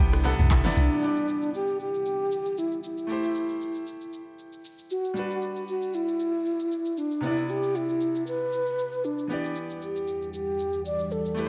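A swung 16th-note groove at 116 BPM in 4/4 drives this late-night, deep amapiano piece in E minor, cut from a longer track. An overdriven, layered deep house drum kit sits up front with a deep kick, fat snare, handclaps, rim click, shaker and toms, while a round, percussive log drum bass with a fast attack and dark decay sounds only until 0.9 s, under an opening drop and a grand piano fill. The bright grand piano plays brilliant, natural accompaniment throughout, moving through chords from Cmaj9 to Em7, Am7 and Gmaj7. A breathy, mellow alto flute with vibrato, a soft attack and an unsteady tone enters at 0.8 s to carry the melody up front, trailed by delay. A moody, detuned sawtooth pad with a sub octave, chorus and its own reverb swells in at the start and returns at 10.0 s with sustained chords. A moderate plate reverb soaks the mix, giving it a dreamy haze.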